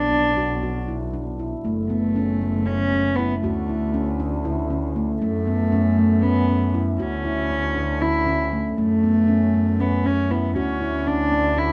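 In a straight, uneven 7/8 pulse at 236 BPM counted in eighths, this restless, shimmering chamber piece, cut from a longer work, moves from Bmadd11 through alternating F#m and Dmaj7sus2 chords before settling on Dmaj9 at 10.6 seconds. A bowed cello with a dark, reedy gut-string tone carries the melody up front, while a handpan struck with the fingertips rings out meditative arpeggios. Beneath them, a close, bowed double bass adds rich, expressive low lines with vibrato and portamento, all held in a moderate studio reverb.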